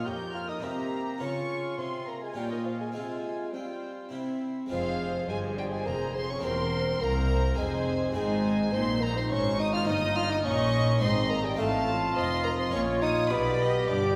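Driving and stormy, this short cut from a baroque-style concerto movement in F minor moves at 104 BPM in 3/4, with a dark, distant bassoon carrying the solo melody over a chamber string band of gut-string period tone, where a rich, smooth-topped violin section leads and a close, warm second violin line runs above it. Violas and a cello section fill out the accompaniment and bass, the cellos set back in the background, while an airy, full-bodied harpsichord plucks its accompaniment from behind. At 4.7 seconds, as the music shifts into a new section on F minor, a rich, reedy double bass section enters to deepen the low end, all bathed in the generous reverb of a recital hall.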